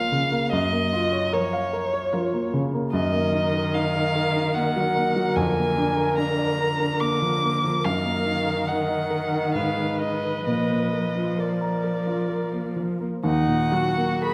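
A veiled, darkly muted violin carries the yearning melody up front in this slow, solemn romantic movement for piano quartet in Eb minor, moving in a rubato 3/4 at 60-76 BPM. Beneath it, a close-sounding muted cello with portamento shapes a second line, while a soft-attacked muted viola and a polished, present grand piano with short sustain supply the accompaniment, all four sounding from the start through 14.3 s. A wet recital hall reverb surrounds the ensemble, and this passage, cut from a longer piece, arrives on an Eb minor chord at 13.3 s as a new section begins.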